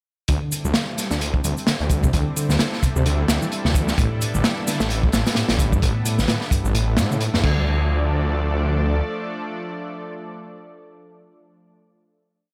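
A gritty, small-room breakbeat track at 130 BPM in D minor with a swung 16th feel, where a crunchy, saturated breakbeat kit with dark cymbals and a tight kick drives alongside a menacing detuned saw bass, a reedy overdriven electric piano riff with fast tremolo and a filter sweep, a faint tape-warm shaker and soft-handed congas, all over a sustained pad. The groove drops away at 7.7 seconds, with the bass lingering until 9 seconds, leaving the lush, warbling chorused pad ringing out its final hit until 11.7 seconds.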